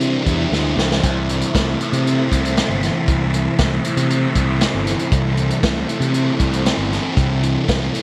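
Psychedelic rock with a hypnotic, trippy mood, heard in a short section cut from a longer piece in a straight 4/4 feel. A thick, double-tracked fuzz guitar carries the riff up front, its distorted tone colored by a phaser, while a round, overdriven fingered electric bass sits beside it with a dark, fuzzy grit. A vintage acoustic drum kit plays hi-hat, punchy kick, medium-tuned snare and dark splash cymbal in a natural studio room, with a brief fill between 0.5 and 1.0 seconds. In the background, a soft string machine holds silky, mellow sustained chords with a slow attack, long release and ensemble chorus. The harmony moves from Cadd9 to Am, and a studio reverb gives the whole band a shared sense of space.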